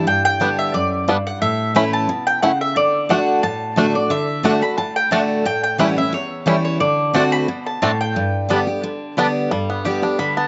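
Bluegrass with a joyful, driving swing, cut from a longer piece: a woody, double-strung mandolin carries the melody up front with a slapback echo until 9.1 seconds, over a full-bodied dreadnought steel-string guitar picking a bright accompaniment, also with slapback echo. A twangy, percussive banjo played with fingerpicks joins at 0.4 seconds with arpeggios, and from 4.4 seconds a second mandolin adds echoed stabs in the background as the chords move from G through A, D, A7 and D7 to Gadd9. The outdoor recording is dry, with a dark top end.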